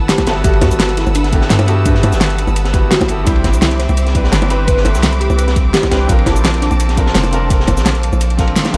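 A deep, mellow 808-style bass sits up front in this uplifting liquid drum and bass excerpt at 170 BPM in G major, beneath a soft, wave-folded pluck melody with vintage sampler grit and analog delay, a clear, polished baby grand piano with lush chorus, biting symphonic strings pumping against the sidechain, a punchy electronic kick, a pop kit with a fat snare and metallic hats, a dark, gritty breakbeat kit and low-tuned bongos in the background, as chords move from Gmaj13 to Cmaj9 to Bbmaj9 before the kick drops out for a band accent at 8.6 seconds.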